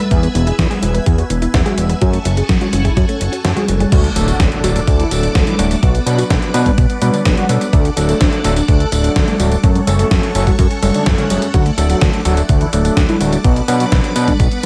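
Nostalgic and danceable, this italo disco cut from a longer piece moves at 126 BPM in a straight 4/4. A fat, saturated analog bass with a detuned sawtooth edge sits up front beside a thumpy, tape-warm electronic kick that sounds re-recorded in a small room. An overdriven, gated 80s digital drum machine adds a snare with gated reverb, hi-hat, congas, tambourine and crash cymbal. Over sustained chords from a swirling, vintage string machine treated with ensemble chorus and phaser, a mellow, brassy synth carries the melody in the background with chorus and vibrato. A soft, round pluck plays arpeggios until 3.9 s, when the kick has just dropped out briefly and a very quiet electronic impact marks the move into the next section, where a barky, gritty tine electric piano with fast tremolo enters with stabs at 4.2 s. The chords move among E, F#madd9, D, Bm and F#m, all bathed in a digital ambience.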